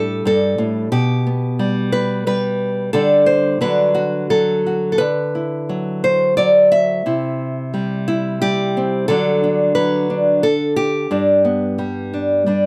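Nostalgic and peaceful, this short folk excerpt features a single fingerpicked nylon-string guitar in a gently rubato 3/4 feel, moving through suspended and added-ninth D voicings before settling from C and D onto G at 11.1 seconds. The guitar sounds bright and small, with fresh strings and audible finger squeak, sitting up front across a range from G2 to E5. A moderate small-room reverb frames it within a dark, warm production.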